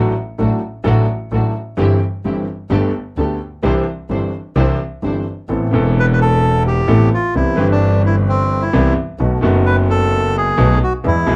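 A dark, warm club sound with moderate reverb frames this passionate, tense tango excerpt at 130 BPM in 4/4, played with a rubato feel and shifting from C major to A minor at 5.5 s. An up-front concert grand piano with deep, smooth bass carries the accompaniment beside a close, earthy bowed double bass with light vibrato, while a veiled, con sordino string ensemble adds distant stabs until 5.2 s. At 6.0 s a reedy, boxy bandoneon takes up the melody over the piano and bass.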